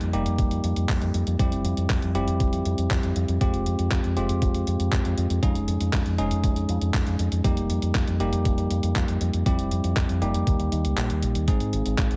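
A straight 4/4 pulse at 119 BPM drives this nostalgic, danceable italo disco excerpt: detuned 8-bit drum-machine handclaps and hi-hat with a tape-warm, small-room character, a round fingered electric bass shaped by an envelope filter, and up-front, bell-like tine electric piano stabs colored by a low-pass filter and digital delay all sound from the very start, while a gritty, thumpy electronic kick enters at 0.4 seconds and briefly drops out at 11.0 seconds, everything moving over chords from Eb/F through Fmadd9 and Dbsus2/F to Ab and set in a dry, heavily compressed radio sound with vinyl crackle.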